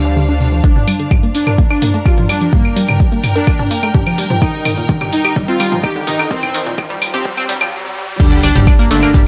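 Hypnotic and driving, this melodic techno excerpt opens with a gritty, sawtooth synth bass and a jingly, distant tambourine over a dark, bowed string section playing sul tasto with light vibrato, while a swell, riser and sub drop sit in the background. At 0.6 seconds an overdriven, deep electronic kick and a layered deep house kit of claves, crash cymbal, hi-hat and toms come in up front, and a smooth, full-bodied supersaw carries the melody with delay. A round, detuned analog pluck plays arpeggios throughout, colored by chorus and digital delay, with a filter sweep on it across the long build-up as the chords move from Gm to Eb. The build-up stops at 7.7 seconds, then the drop lands at 8.2 seconds with an impact, bringing back the tambourine, followed shortly by the bass, alongside a very quiet, fat polysynth line and a barely audible, warbling analog drone. The bass, strings and pluck carry sidechain pumping, and the mix has light reverb.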